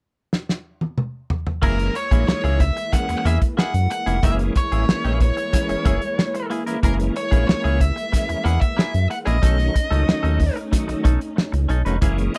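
Funk at 92 BPM in F# mixolydian, strutting and energetic, this cut from a longer piece opens with a drum fill on a tight, fat-snared soul kit with dark cymbals before the full band lands at 1.6 seconds over an F#9 groove that moves to B9 at 9.4 seconds. A nasal, overdriven lead guitar with a parked wah carries the melody, while a clean, compressed semi-hollow guitar accompanies, a shouting tonewheel organ with chorus vibrato and slow rotary speaker adds stabs, and a round, deep analog bass sits up front with the drums. Distant, lush strings hold sustained chords in the background, and the mix is dry and close with little reverb.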